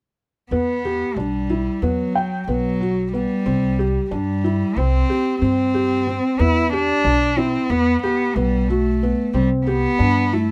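Set in a straight 9/8 at 184 eighth-note beats per minute, this contemporary instrumental piece in E minor feels urgent and restless, and is tuned slightly low to A4 = 438 Hz. A bowed cello carries the melody between F#3 and E4, played sul tasto by one player with vibrato, a soft attack and an airy bow, sounding warm, boxy and up front. Alongside it, a felt-muted upright piano spins arpeggios from B3 to G5 with a thick-felt, mellow and vintage tone, its action noise audible in the intimate, dark sound. A pizzicato upright bass with steel strings anchors the low end between B1 and G2, woody and dark. All three parts play together from 0.5 to 10.5 seconds over a progression of Emadd9, C5, Em and C, captured with close, detailed microphones and little reverb, in a short cut from a longer piece.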